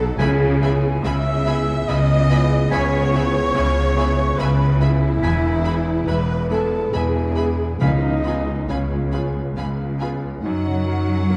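In a rubato 3/4 at 70 BPM, this tender, moving cinematic film-score excerpt in C# minor sets a smooth-topped, lush violin melody above a second violin line, a close viola section, a bright piano with audible action noise, mellow ringing harp arpeggios, a focused cello section and an up-front, expressive double bass section, while a clear oboe, a pure silver flute and a clarinet add second lines and horns hold sustained chords through the dark, roomy scoring-stage reverb, and hard-mallet timpani sound quietly at 0.2 s and 7.8 s as the harmony moves from C#m7 through E and C#7 to F#.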